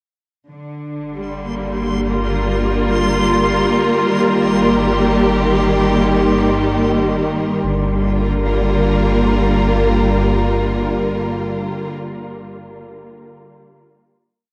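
A lush, biting symphonic string section holds slowly shifting chords up front in this serene, reflective ambient piece, joined at 1.3 seconds by a deep, rumbling, tube-saturated bass drone and a dreamy reversed texture swelling on a high note, with a tense, phased string-like drone emerging in the background at 2.9 seconds, all bathed in cathedral reverb and the warbling pitch drift of worn cassette tape.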